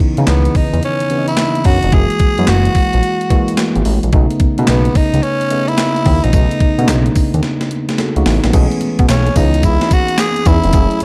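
A swung sixteenth-note groove in four drives this flirty, upbeat new jack swing cut, lifted from a longer R&B piece. A clean 12-bit drum machine with a sampler-style feel sits up front, its thumpy kick, medium-tuned snare, handclaps, hi-hat, tambourine and crash carrying a tape-warmed tone re-recorded in a large room; it plays a fill from 7.4 to 8.5 seconds before the music moves into a new section. Underneath, a fat analog bass, also up front, blends saturated, detuned sawtooth and square waves into a thick, nasal tone with a quick filter pluck and sustained notes. A worn, slightly out-of-tune tine electric piano played through a combo amp carries the ninth chords, shifting to a suspended thirteenth at the change. On top, a raspy, gritty tenor saxophone takes the solo lead from 0.3 seconds, bright and punchy in a pop style with vibrato. The dark production keeps reverb to a bare minimum, leaving the parts close and dry.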